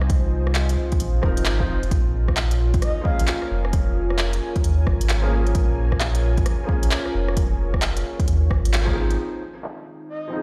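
Swung sixteenths at 132 BPM drive this wistful, nocturnal future garage excerpt, where an overdriven deep kick and a drum kit of handclaps, smooth hats and rim clicks sit in stone-room reverb beneath a round, pumping sub bass moving from Fm7 to Bbm7, a moody detuned analog pad that takes a filter sweep from 9.2 s, a soft felt-muted upright piano with audible action noise and digital delay, and a breathy flute-like synth lead with dub echo that surfaces briefly at 2.8 s.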